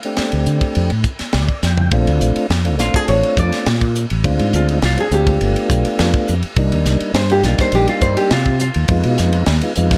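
A full-bodied, fingerpicked nylon-string guitar with slapback echo carries the melody and takes a soaring solo from 1.9 seconds in this slick electric jazz fusion passage, cut from a longer piece. A dark, round tonewheel organ, lightly overdriven through a fast rotary speaker, accompanies and adds a fill from 1.0 seconds, while a small-room funk kit with a high-tuned snare and tight kick plays a fill at 1.6 seconds. An up-front fretless electric bass with ensemble chorus anchors the lush jazz chords, from Bbmaj9 through G7 to Cm9.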